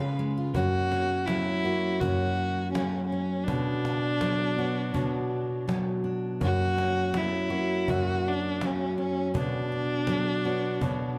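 Wistful and tender, this acoustic pop passage, cut from a longer piece, moves in a straight 4/4 feel. A single bowed violin carries the melody up front, its focused, boxy tone shaded with vibrato and a touch of digital delay. Beside it, a fingerpicked jumbo steel-string guitar gives full-bodied accompaniment, with finger squeak audible. A clear upright piano with a smooth, vintage character and long sustain sits in the background and slips in a short fill at 10.8 seconds. A woody cajon with faint snares enters at 0.5 seconds, sounding distant in a large room, while the harmony opens on C#7 before swaying between F# and Bmadd9 under light reverb.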